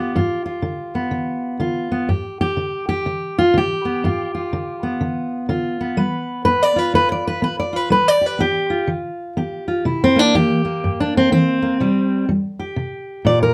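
A loping swung 4/4 carries this gritty, laid-back acoustic country blues excerpt, where a lone fingerpicked jumbo steel-string guitar sits up front with a full-bodied tone and audible finger squeak, moving from G7 to C7 at 9.8 seconds in a small room with a modest reverb.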